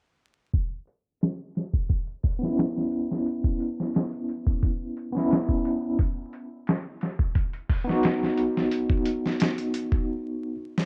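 A straight 4/4 groove at 88 BPM opens at 0.5 s on a dusty, sampler-style soul kit with a thumpy kick, medium-tuned snare and hi-hat, compressed and overdriven as if re-recorded in a small room, before a barky, gritty tine electric piano enters at 2.4 s through a combo amp with medium tremolo, tape echo and a filter sweep, moving from C#m7 to B in this melancholic, brooding C# minor trip hop passage cut from a longer piece, all under light reverb, vinyl crackle and a sweeping low-pass filter until a break at 10.1 s.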